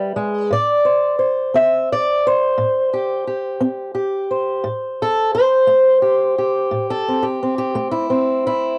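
A short home cassette recording cut from a longer piece, set in a small booth whose damp, close ambience hangs just behind the playing. This is acoustic country blues in a slow 12/8, mournful and smoky in mood. A single fingerpicked steel-string guitar carries everything, placed up front with fresh strings and a boxy body tone, playing in a swing style across a range from A2 to E5. It opens on an E chord before settling onto Am7 at 0.5 seconds, where its solo runs through to the end at 8.8 seconds. The fresh strings against the cramped, boxy resonance give the lone guitar an intimate, after-hours feel.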